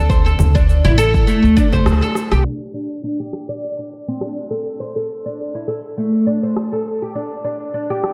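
Soaked in a lush hall reverb and dulled by a low-pass filter, this hypnotic, earthy organic downtempo excerpt at 102 BPM with a light 16th-note swing opens on an Asus4 chord, where a dark, woody pizzicato upright bass with sidechain pumping and a deep, layered electronic kick drum play under a plectrum-plucked, up-front oud's filtered, delayed arpeggios and a produced bed of electronic cabasa, congas and rim click, until a band accent at 1.9 seconds and a drum fill at 2.2 seconds give way, from 2.5 seconds, to filter sweeps on the oud and percussion as those two parts carry on alone.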